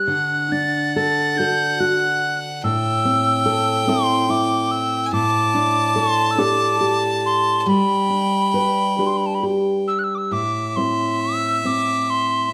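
Haunting and mournful, this Celtic slow air drifts in a rubato 6/8 at roughly 45-49 BPM in A dorian, tuned to A4 = 439 Hz, and is cut from a longer piece. A mid whistle of metal carries the melody high up, its airy tone touched with vibrato, tongued notes with a chiff, and rolled-off highs. Beneath it, a dark, thumb-plucked classical nylon-string guitar sits up front, playing the accompaniment through D, Am7, Dsus4/A and G. A single clear, earthy fiddle enters at 0.1 seconds with a quieter bowed second line and light vibrato. The harmony turns to Am as a new section begins at 10.3 seconds, and close, detailed microphones with light reverb give the trio an intimate sound.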